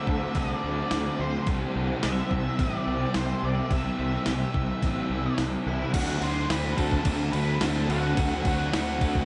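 Wistful and dreamy, this shoegaze and dream pop rock excerpt moves at 107 BPM in D mixolydian, with a distorted octave-fuzz lead guitar carrying the melody over background riffs from a thick, dark fuzz guitar and a crunchy overdriven guitar trailed by reverse reverb, a very quiet, twangy twelve-string electric guitar picking arpeggios, a growly, punchy fuzz bass, an up-front, thumpy 12-bit drum machine, and a deep, moody ambient pad holding detuned chords until 5.9 s, all bathed in a church-like reverb.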